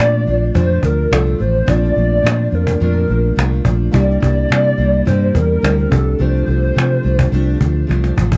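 A dark, lightly reverberant production frames this laid-back, dreamy stretch of indie bedroom pop at 106 BPM in Bb lydian, moving from Bbmaj7 to C7 at 3.9 seconds and then F6/C. A warbling, detuned square-and-sawtooth lead carries the nostalgic melody through tape echo and ensemble chorus, over a full-bodied, fingerpicked jumbo acoustic guitar bathed in lush chorus and vibrato, and a worn, slightly out-of-tune tine electric piano, lightly overdriven with a cassette tint, sits in the background. A round, punchy, foam-muted electric bass sits up front beside a woody, band-limited cajon played with soft hands, which takes a fill after the lead drops out at 7.9 seconds.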